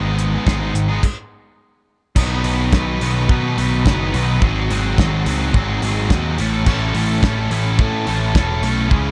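A cranked, double-tracked stack guitar riff opens this restless, moody indie rock excerpt at 107 BPM, bright and overdriven up front, with a growling, picked electric bass in gritty overdrive beneath it and a cloth-damped, thuddy acoustic kit entering at 0.2 seconds with dark cymbals, a tight kick and a rolled-off top. After a stop from 1.0 to 2.2 seconds, the band moves from G#m into a second section that passes through B, G#7 and A. A small room ambience surrounds the straight 4/4 playing.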